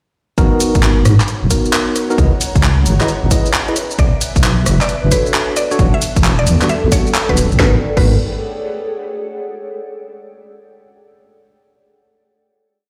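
A swung two-step garage rhythm of punchy kick and an overdriven kit with cracking snare, handclaps, rim clicks, skipping hi-hats, shaker and crash drives this bouncy, late-night UK garage piece, as a deep, wobbling chorused bass pumps up front under clean electric piano stabs trailing dub echo, a cloudy granular pad drifts in at 1.1 s, a woody mallet-like pluck riff joins at 4.0 s, and the mix rings in a stone room before settling on a final chord at 7.6 s.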